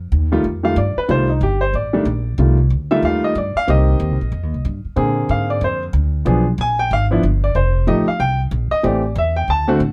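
A light reverb surrounds this relaxed, swinging jazz piano trio passage at 186 BPM in F mixolydian, where an up-front baby grand piano with a natural, short-sustain tone takes a solo from 0.3 seconds over a woody, thumpy pizzicato upright bass on gut strings, moving through F9, Bb9 and Bdim7.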